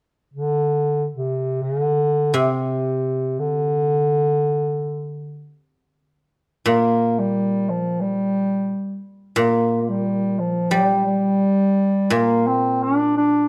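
In a rubato 2/4 pulse drifting between 66 and 90 BPM, this wistful, graceful excerpt of Chinese traditional chamber music opens with a solo bass clarinet carrying the melody from 0.3 s, its mellow, distant, roomy tone sitting up front in a classical style. At 2.3 s a guzheng played with fingerpicks joins as accompaniment in its low register, its silvery, ringing strings also placed up front, and the music moves into a new section at 6.7 s. Close, detailed microphones and light reverb give the pair an intimate clarity.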